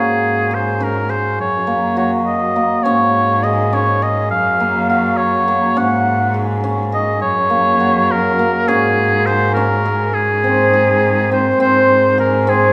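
Contemporary chamber music in 5/8 at 206 eighth-note beats per minute in Ab mixolydian, this shimmering, hopeful excerpt sets a warm, up-front solo oboe melody with vibrato and a smooth top over ringing, mellow hammered cimbalom arpeggios, while a single bowed cello plays a rich, nasal, slightly boxy bass line with soft attacks, vibrato and portamento, all bathed in the wet reverb of a recital hall.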